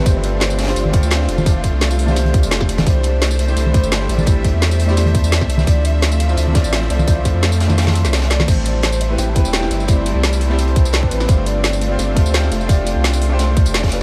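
Liquid drum and bass with a warm, uplifting mood, this 14-second slice of a longer piece sits in a dreamy mix soaked in a huge ambient reverb. A round, deep sine sub bass with tube saturation sits up front beneath a concert grand piano whose natural tone is spread by lush chorus and analog delay, while a distant, bowed string section holds sustained chords with vibrato and portamento, pumping against the sidechain. In the background, a hollow, woody clarinet-like synth lead carries the melody through phaser, subtle chorus and analog delay. From 0.1 seconds a tight, layered electronic kick drives the groove alongside a drum and bass kit with a woody snare, metallic hats, crash and tambourine, plus a very quiet, gritty breakbeat kit with a high-tuned snare and rolled-off top. Soft-handed congas add bright percussion from 0.9 to 8.5 seconds, and the kick drops out for a drum fill from 7.8 seconds before the second pass. 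The harmony moves through G9sus4, C6, Dm9 and Am9, returning to G9sus4.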